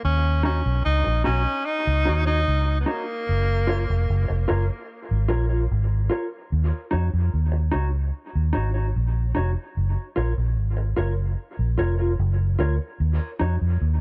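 Dub reggae at 74 BPM in Eb minor, this hypnotic, meditative fragment from a longer piece rocks between Ebm7 and Gbmaj7 over a round, foam-muted fingered electric bass that sits up front throughout. A breathy, whispered tenor saxophone opens with an intimate solo phrase of scooped notes and vibrato, trailing dub echo until it drops away at 4.5 seconds. From 0.4 seconds a mellow, clean electric guitar with a dark, compressed tone plays accompaniment, colored by subtle chorus and dub echo inside a small room ambience.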